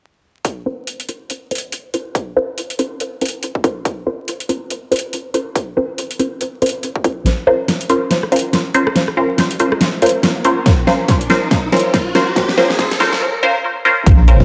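Deep dubstep at 141 BPM in Bb minor with a half-time, swung feel and a heavy, meditative mood: a punchy electronic kick and a drum kit with a huge snare, rim clicks and metallic hats sit up front under a muted, resonant chord stab on Bbmadd9 soaked in phaser and dub echo, while a build-up from 7.3 seconds brings a drum fill, a filter sweep and a background riser before an impact and a saturated, thick sub bass land at 14.1 seconds, all in a dark production with vinyl crackle and echo-chamber reverb.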